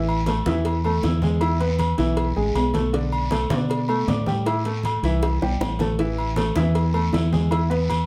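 A danceable, passionate salsa groove in straight 4/4 at 157 BPM drives this short cut from a longer piece, with agogo bells and ringing metal-shell timbales up close, compressed, saturated low-tuned congas and tight, high-tuned cowbell and bongos further back, and a raspy guiro sounding distant as if in a large room. A round, dark fingered electric bass sits up front beside a clear, worn concert grand piano with short sustain, both playing throughout over chords moving from A5 through E and A9sus4 to an A7 with the third omitted before landing on E5. A drum fill breaks in at 5.2 seconds, and a moderate studio reverb places the whole band a little further back in the room.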